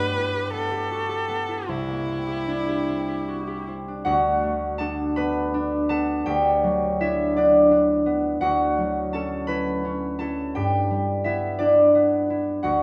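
In a rubato 6/8 lilt of roughly 49-59 dotted-quarter beats per minute, this luminous, pastoral impressionist duo opens with a clear, smooth bowed viola singing a short vibrato melody over a ringing, fingerpicked concert harp that spans the instrument's low and high registers. The viola falls silent at 3.7 s, and the harp carries on alone through a second passage of lush chords, from D6 and Gmaj7/D to Dmaj9, settling back on G69. Both instruments sit up front in a moderate recital hall reverb, and the passage is cut from a longer piece.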